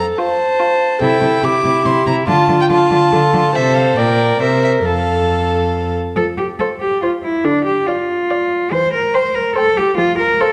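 A close, airy-bowed violin carries the melody high above the ensemble in this lively, graceful excerpt from a quick classical-period movement for string quartet in triple time. Beneath it, a second violin with a dark, distant, nasal tone plays a second line, joining at 0.2 seconds. The viola fills in the accompaniment with a smooth-topped, reedy sound, while the cello sits up front with a rich bass that climbs well into its upper range. Every player uses gut strings in period style, and the short passage states its opening idea twice, the repeat starting at 6.2 seconds. A moderate scoring-stage reverb and a dark production give the quartet a rounded, intimate glow.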